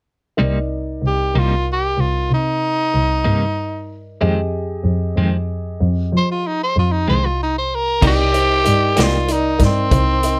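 Mournful and brooding, this short excerpt from a slow blues in C minor moves at 63 BPM in a straight 12/8, with the harmony resting on Cm7, shifting to Fm7 at 4.2 seconds and returning to Cm7. From the opening, a clean, picked electric guitar with tremolo and a compressed, scooped tone sits up front in the accompaniment, joined by an upright piano whose woody, polished notes carry a long sustain in the middle register. Beneath them a dark double bass, bowed by a single player with vibrato and a soft attack, gives the low end a distant, shadowy quality. A growling tenor saxophone takes the melody from 1.1 seconds, its raspy, gritty jazz voice bright and present with vibrato, leading the piece as a solo. At 8.0 seconds a vintage acoustic drum kit enters with crash cymbal, hi-hat, a punchy kick and a medium-tuned snare, heard naturally in a small room, while the guitar drops out at 9.2 seconds. 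The recording is dry, with little reverb, keeping the instruments close and intimate.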